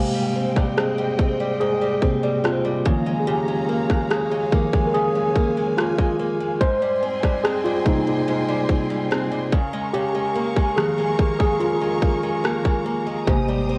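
A faint mains hum and light reverb color this cassette home recording, a romantic, smooth contemporary R&B piece at 72 BPM in 4/4, cut from a longer work and moving from Abmaj7 to Db6. A mellow, clean tine electric piano sits up front and carries a solo throughout, over boxy picked arpeggios from an old ladder-braced acoustic guitar with finger squeak and analog delay, and lush bowed strings with vibrato and portamento holding sustained chords. An electronic trap kit of hard-clipped, overdriven kick and rim click with 12-bit sampler grit enters at 0.6 seconds, and a soft, round, dark 808-style bass appears only at 13.3 seconds.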